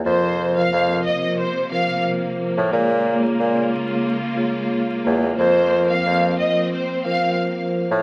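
Hip hop at 90 BPM with a lightly swung feel, dark and reflective in mood, this short cut from a longer piece moves from Fsus4 to Bbm7 and back over a bed of vinyl crackle and small-room reverb. A soft-mallet vibraphone with a mellow, ringing tone, slow motor vibrato and a cassette-tape colour plays accompaniment up front, while a lush symphonic string section holds sustained chords beneath it. A rich, close violin section carries the expressive melody with tape echo, and a warm, roomy bassoon anchors the bass with light vibrato and a soft attack.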